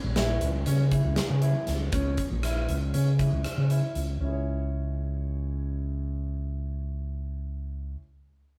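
Heard through a moderate large-studio reverb with the band playing live in one room, this short cut from a longer progressive instrumental piece moves in an intricate, driving 9/8 at 237 eighth-note beats per minute in C# dorian over a C#m chord, as a round, overdriven, up-front fingered electric bass anchors the low end throughout, a natural-sounding concert grand piano with deep bass plays arpeggios, and a huge arena drum kit with a punchy kick, medium-tuned snare, rim clicks, hi-hat and a pumping hall sound drives the music until it drops out at 4.1 s.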